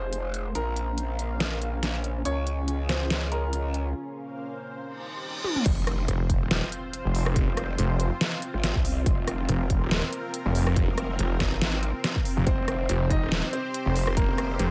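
Set at 141 BPM in 4/4 with a half-time feel and a light swing on the 16ths, this aggressive, chaotic slice of heavy wobble dubstep in F minor is cut from a longer piece. It opens with a clear, open baby grand piano carrying the melody through a tape echo over a lush, thick unison pad treated with chorus, phaser and sidechain pumping, while a growling, wobbling bass pushed up front with distortion and overdrive churns underneath, moving through Fm, Bbmadd9 and Db. A dubstep drum kit with a deep snare, crisp hats, rim clicks and toms sits close and tape-warm throughout, and after the piano drops out a break builds from 4.0 seconds, with a reverse cymbal rising into a drum fill. The drop lands at 5.7 seconds on an F5 chord with a heavy impact and a punchy layered electronic kick. At 6.1 seconds a snarling, saturated sawtooth bass with a moving notch filter joins and growls alongside the first bass. 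The piano melody returns at 12.5 seconds above the din, all wrapped in a digital ambience.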